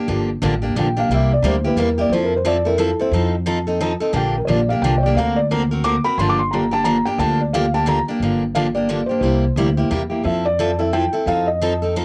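This home recording on cassette has a light reverb. It is a swinging, fiery excerpt of gypsy-jazz string swing in a lilting triple metre, cut from a longer piece. A bright, full-bodied picked steel-string guitar sits up front with the accompaniment, carrying a tape-worn tint, while a woody pizzicato upright bass holds down the low end just after the start. At 0.8 seconds a felt-muted upright piano enters with the melody, soft and dark, its thick felt and audible action noise giving it an intimate, mellow voice that also bears the cassette's character. The piano carries a solo up to 8.2 seconds, over rich extended harmonies such as Gm9, C9, Bb69 and a Daug7, before a new section turns back through C9, Fmaj9 and F7.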